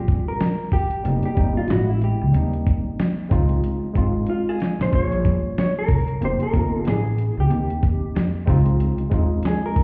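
A worn, slightly out-of-tune tine electric piano with light overdrive opens this mellow, nocturnal jazz-hop excerpt alongside a dark, clean hollow-body jazz guitar carrying the melody and a woody, gut-strung upright bass played pizzicato and placed up front. A gritty, compressed sampler-style drum kit with a thumpy kick and fat snare joins at 0.1 seconds over a swung groove, adding a fill from 4.3 to 4.9 seconds as rich extended chords cycle beneath. The whole excerpt sounds muffled, as if heard through a wall, with club reverb and vinyl crackle, and the bass drops out at 9.4 seconds.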